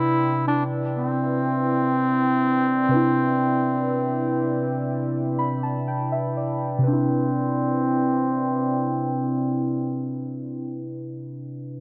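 Washed in a moderate plate reverb and the warbly pitch drift of worn cassette tape, this smooth, dreamy contemporary R&B piece in C major moves at 61 BPM over a Cmaj9 chord: a clear bass clarinet carries the solo melody up front, muted felt-like synth keys with chorus add a soft, intimate accompaniment and a fill from 4.9 s, and a deep, moody ambient pad holds sustained chords quietly in the background, as a filter sweep runs through the opening 6.9 seconds before the music shifts into a new section.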